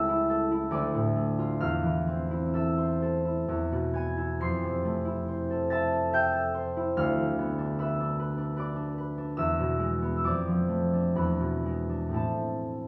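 A solo concert harp opens this short classical cut from a longer piece, its thumb-plucked, ringing tone spanning C#2 to C7 in a slow, rubato 3/4 at around 58-76 BPM in A minor. The mood is mysterious and wistful, with harmony that moves from A7/C# to Dm, settles through Fmaj7 and Bdim/D, and closes on E7 resolving to Am at 12.1 seconds. A wet stone-room reverb surrounds the harp, which sounds as if heard from further back in the room.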